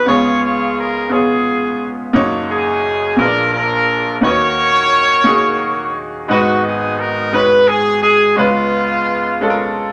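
Hopeful and soulful, this gospel excerpt moves in a slow, straight 6/8 at 58 beats per minute, cut from a longer piece. A clear horn section carries the melody from G#3 to C#5, its smooth top and light vibrato giving the ensemble a polished pop-style sheen as it sits up front. A bright grand piano accompanies across a broad span from F#1 to D5, its brilliant yet worn tone sounding natural and close. The harmony travels from C#7 through F#6, A#7, D#m7 and G#m7 before returning to C#7 at 8.4 seconds. Both parts play together for the whole of the roughly ten seconds, set in a wet small room whose short reverb gives the sound an intimate glow.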